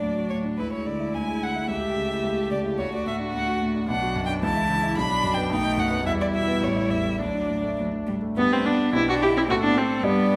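Lively and graceful, this quick classical-period movement for piano quartet moves at 109 BPM in 2/4 and D major with a rubato feel, the violin carrying a rich, smooth melody with vibrato while the viola, bowed up front with a full, even tone, supplies accompaniment alongside the concert grand, whose intimate sound, deep bass and audible action noise sit up front in the mix. The cello weaves a second line played sul tasto, with a soft attack, airy bow and light vibrato, and all four players sound through the full 10.4 seconds in a wet recital hall ambience. Cut from a longer piece, the passage turns through minor harmonies back home to D before shifting toward G at 8.4 seconds.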